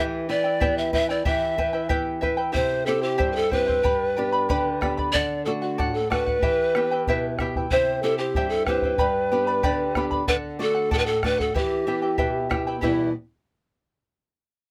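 A moderate booth ambience frames this festive, earthy Andean folk excerpt in E minor at 93 BPM in a straight 2/4, cycling through Em, C, G and D. Up front, a breathy bamboo pan flute carries the melody with vibrato, a soft, chiffy attack, rolled-off highs and a slightly unsteady, mellow tone. A bright, shimmering charango fingerpicks its double strings, some doubled at the octave, alongside a small, warm-toned fingerpicked nylon-string guitar. A round bombo with a small-room sound joins at 0.6 s and plays through to the cut at 13.1 s.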